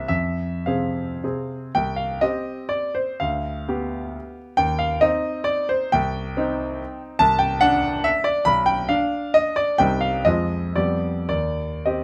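A clear, vintage-toned grand piano plays solo and up front with smooth, short-sustained notes in this wistful, nostalgic excerpt of a romantic classical dance in triple time, its dotted rhythms pulled by rubato and captured by close, detailed microphones in light reverb.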